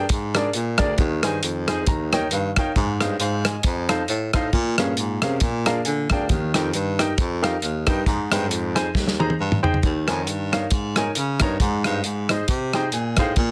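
Uptempo gospel in Ab major at 136 BPM, this short excerpt cut from a longer piece swings its eighth notes with a reverent, hopeful spirit. A baby grand piano carries the accompaniment with a natural tone and short sustain, dropping in fills at 1.4, 5.4 and 12.5 seconds. The bass line falls to a breathy, whispered baritone saxophone, played up front in an intimate jazz style with subtone, vibrato, soft attacks and scooped notes. A dry, dark soul drum kit with a tight kick, smooth medium-tuned snare, hi-hat, rim click and toms sits up front, its snare lightly clipped, and it adds a fill near 8.9 seconds. The harmony moves through chords such as Bb7, Ab/Eb, Eb7, Bbm7, Abmaj7 and Eb7sus4 before settling on Ab6, all in a small room with light reverb and a dense, heavily limited modern master.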